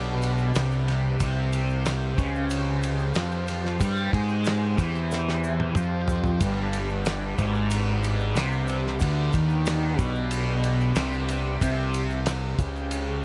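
A steady, straight 4/4 pulse at 92 BPM drives this dark, mysterious psychedelic rock excerpt, where a thick, double-tracked fuzz guitar riff and a punchy, overdriven fingered bass sit up front over a dry 70s drum kit with a fat snare and tight kick, which plays a fill from 5.1 to 6.4 seconds, while a shouting tonewheel organ with key click and slow rotary speaker holds sustained chords in the background alongside a grainy, distant egg shaker, all moving between G and C5 in light reverb.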